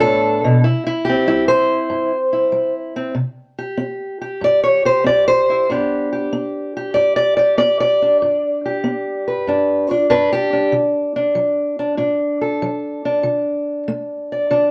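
Acoustic country blues in G major at 95 BPM, this swaggering, soulful excerpt swings its eighth notes in 4/4 and is tuned slightly flat of standard pitch. A lone fingerpicked steel-string parlour guitar, dark and boxy and placed up front, plays throughout, ranging from G2 to D5 over a progression that moves from G to C, back to G at 5.7 seconds and on to D at 10.7 seconds. A moderate studio reverb gives the guitar a modest sense of room.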